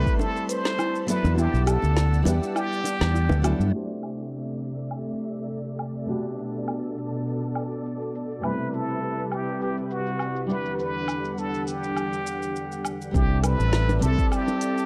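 A bright, punchy fretless electric bass sits up front in this sunny, blissful sunset chillout excerpt, its lush chorus carrying it through the opening bars and returning briefly near the end. The groove moves at 102 BPM in 4/4 with a light sixteenth-note swing. A layered deep house kit of woody snare, smooth hats, shaker and woodblock runs throughout, joined by a deep electronic kick at the start and close and by very quiet, low-tuned bongos. A full-bodied, fingerpicked nylon-string guitar with digital delay and a silky vintage string machine with slow-attack ensemble-chorused chords hold the harmony from start to finish. A gentle, round pluck plays chorused, delayed arpeggios in the background only until 3.7 seconds, while a brilliant plunger-muted trumpet with a jazz-style wah-wah voice sings the melody at the outset and again from 8.4 seconds. Chords of Am9, Em9, C69 and Gmaj9/B glide under a dark, low-pass-filtered production with light reverb, and a filter sweep shapes the long middle stretch.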